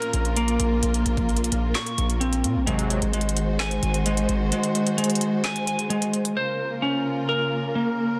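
A clean, twangy electric guitar plays arpeggios up front, with vibrato and digital delay, over dark, lush bowed strings holding sustained chords, as this eerie, hard-hitting trap excerpt in Bb minor opens at 130 BPM in a half-time feel. A trap drum kit with a knocking kick, woody snare, crisp hi-hats and handclaps hits up front alongside a heavy, aggressive distorted 808-style bass with a fast attack and decaying tail. Around 2.7 seconds the harmony moves from Bbmadd9 to Ab7, and a brief, fat, brassy analog synth stab with detuned sawtooth tone, chorus and delay sits low in the mix. The 808 drops out at 4.5 seconds and the kick falls silent with it, leaving the drums to carry on until 6.4 seconds, when the kit stops and the guitar and strings return to Bbmadd9 on their own. Light reverb surrounds a dense, heavily limited modern master.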